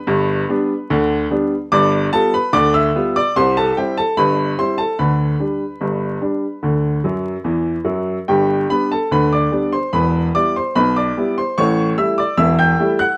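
A clear, woody upright piano sits up front and carries this jaunty, playful ragtime passage on its own, moving at 73 BPM in a straight 2/4 in G major, tuned slightly high to A4 = 443 Hz and ranging from deep bass to the high treble. The harmony travels from G through G7, C, G/D and D back to G, then on to Em and A7, with a brief piano fill between 7.0 and 8.3 seconds. A moderate studio reverb and a layer of vinyl crackle give the sound an old-record character, and this 13.2-second section is cut from a longer piece.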